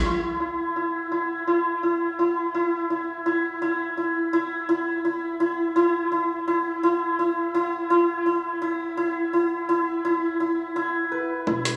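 A bright, shimmering hammered santur plays up-front arpeggios through low-pass filtering and dub echo in this cinematic, dark excerpt of half-time drum and bass at 168 BPM, with a deep, thick saturated sine sub bass touching in at the start and returning at 11.5 s alongside a gritty, thumpy pitched-down kick, before a compressed, tape-warm sampler-style kit adds hi-hat and rim click at 11.7 s, all inside a wet echo-chamber reverb that suggests a big sound system in a bare room.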